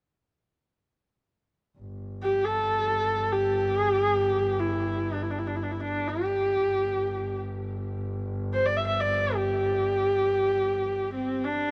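In free time, this vast, galloping Mongolian traditional excerpt lays a biting, distant bowed double bass drone on a low G from 1.8 seconds beneath an up-front horsehead fiddle melody entering at 2.2 seconds, husky and focused with vibrato and portamento, all heard through light reverb and the warbling pitch drift of worn cassette tape.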